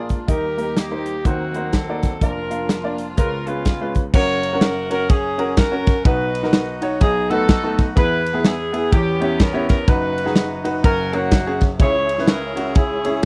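Jubilant and soulful, this uptempo gospel passage swings along at 125 BPM in 4/4, cut from a longer piece. A punchy, roomy saxophone section carries the melody up front, while a clear, natural grand piano supplies accompaniment across a broad range beneath it. An acoustic drum kit sits forward in the mix with bright cymbals, a medium-tuned snare and a punchy kick, driving the groove with crash, hi-hat and ride. A very quiet, distant string section adds bowed, expressive sustained chords with vibrato and portamento until 4.1 seconds, when the harmony shifts from Eb toward F#, B and E. At 11.8 seconds a smooth tonewheel organ slips in behind the band with key click, chorus vibrato and a slow rotary swirl, landing on C#m, all within a dry, close 1970s-style studio sound.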